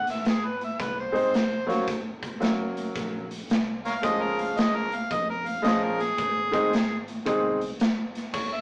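Gritty and rollicking, this brief excerpt from a longer electric blues shuffle features an overdriven harmonica soloing up front with vibrato, tongue slaps and scooped notes, over a punchy, saturated garage drum kit in a pumping stone room, a dark, round, foam-muted bass in the background, and a clear baby grand piano with long sustain entering at 1.1 seconds, all heard through a rough rehearsal-room recording with a small speaker sound.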